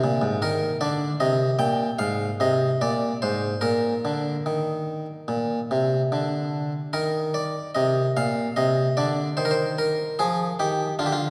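A solo Flemish-style harpsichord, plucked and round on a single set of strings, plays a serene, flowing baroque-style suite movement in Eb major at a rubato 74 BPM in 4/4, moving from Eb through Ab, Bbsus4, Bb and Cm to F across this 11.3-second fragment of a longer piece, its mid-forward tone sitting up front yet heard from further back in a concert hall whose lush 2.4-second reverb lingers around every note.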